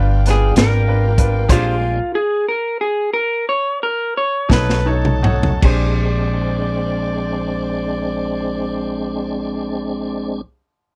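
A slightly broken-up electric guitar through a small old amp carries the melody up front from 0.3 s, its lo-fi, compressed tone leading a rollicking, gritty slow blues in 12/8 at roughly 51-66 BPM in Bb mixolydian. A crunchy breakbeat drum kit with dark cymbals, a tight kick and a saturated, rolled-off top sits up front, and the band stops together from 1.5 to 4.5 s before the drums and a bright baby grand piano break into fills. The pizzicato upright bass sounds woody and thumpy beneath the piano's brilliant, open accompaniment. A lightly overdriven tonewheel organ with chorus vibrato and a slow rotary speaker holds full sustained chords, while a jazz-style horn section with light vibrato adds warm ensemble chords higher up. The playing slows down through the opening, the chords moving from G7 to Bb13 and B9 before settling back on Bb13 at 5.6 s. The sound is dry and close, like a 1970s studio recording, and this excerpt is cut from a longer piece.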